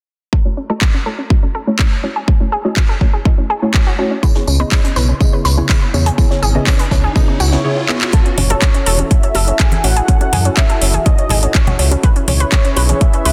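A dense, heavily limited mix with light small-room ambience carries this driving, emotional progressive house excerpt at 123 BPM in F# dorian, where a punchy up-front kick, metallic-hatted house kit, nasal filter-swept analog pluck arpeggios with chorus and delay, and soft deep chord stabs build over F#m7 and C#m7 alongside a dry, fat-snared 70s kit, a background riser and a round, tube-saturated bass from 4.5 seconds, before a drum fill at 7.9 seconds opens onto hard-hand bongos and congas, a lush filtered supersaw pad and a thick, bold unison lead with vibrato, the pad and percussion pumping against the kick.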